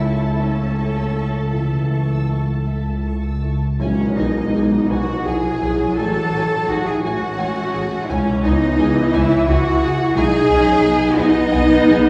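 A slow, sorrowful orchestral film cue in 6/8 opens with the strings, French horns and piano together, moving at a rubato 52-59 BPM. The cellos sit close and the double basses up front, together lending a woody, lush depth, while the horn section holds mellow sustained chords and a baby grand with audible action noise supplies intimate accompaniment in the background. High above, a dark, vibrato-laden violin section carries the melody, shadowed by a hollow silver flute and a smooth, distant second violin section, with violas filling in beneath. At 3.8 s a very quiet, roomy clarinet joins with its own line as a faint, bright tam-tam marks an accent, the tam-tam stopping at 6.7 s. The harmony moves from A/C# through F#madd9/A to C#m and G#m7/B, and a wet recital hall reverb gives the moving passage a spacious glow.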